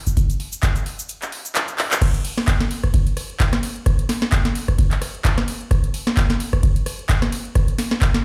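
Driving and trippy, this house excerpt with a swung sixteenth feel sets a deep, analog electronic kick and a booming analog drum machine up front, its crisp snare, handclaps and metallic hats carrying a short room alongside rim clicks, ride and crash cymbals, while a grainy, bright tube shaker sits close until 2.0 seconds, the kick drops out from 1.1 seconds and a drum fill at 1.8 seconds leads into the drop, all re-recorded in a large room on a big sound system.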